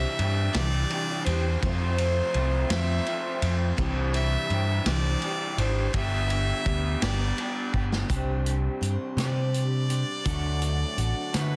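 A close, biting fiddle carries the melody throughout, its rich, earthy tone shaded by light vibrato and an airy bow, and at 8.1 seconds it steps forward into a solo. This is hopeful, nostalgic folk rock with a heartland rock flavor, moving in 6/8 with a straight feel, and it is a clip cut from a longer piece. Beneath the fiddle, a full-bodied jumbo acoustic guitar is picked as accompaniment, while an electric guitar through a small old amp plays a twangy, slightly broken-up riff colored by an ensemble chorus. The picked electric bass sits up front with an amped, warm tone. A vintage drum kit with dark cymbals, a tight kick and a gritty, saturated, rolled-off sound enters at 0.2 seconds and plays a fill at 7.7 seconds that leads into the solo. The harmony moves from Cadd9 through F and G before shifting to Csus2 and D, all in a small room ambience with a dense, heavily limited modern master.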